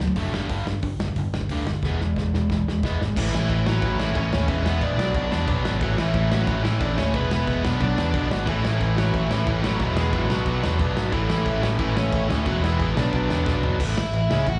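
This short cut from a punk rock gig sounds as if it were heard through the venue's PA, with light club reverb and a muffled top end. At 180 BPM in A major, the mood is upbeat and rowdy: a bright, double-tracked distorted guitar riff sits up front with slapback echo, alongside a growly, punchy overdriven picked bass. A loose indie drum kit in a small room, with dark cymbals, a medium-tuned snare and a tight kick, plays a fill before the bluesy lead guitar arrives at 3.2 seconds. That distorted lead carries the melody through slapback and tape echo while the band cycles through A, E and B minor. At 8.5 seconds a warm, hollow-body semi-hollow guitar joins in the background, double-tracked and overdriven, adding a second riff beneath the lead.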